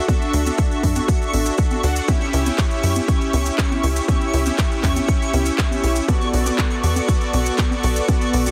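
A soft, full-bodied supersaw opens this emotional, expansive progressive house excerpt, its detuned unison stabs sitting up front with digital delay and sidechain pumping. Beneath it, a tight sequencer bass enters at 0.3 seconds with a punchy, wave-folded tone that blends sawtooth, square and sine, shaped by a filter pluck and a moving notch, and it pumps with the sidechain too. The layered electronic kick drum sits up front, arriving at 0.1 seconds together with a house kit of handclaps and crisp hi-hats. Tape-flavoured congas and grainy, distant maracas are tucked into the background. High above, a twinkling granular texture adds an octave-up shimmer with its own reverb. The harmony moves from Dadd9 to C#dim at 2.1 seconds and then settles on Bm7, all wrapped in a heavily compressed, radio-like sound.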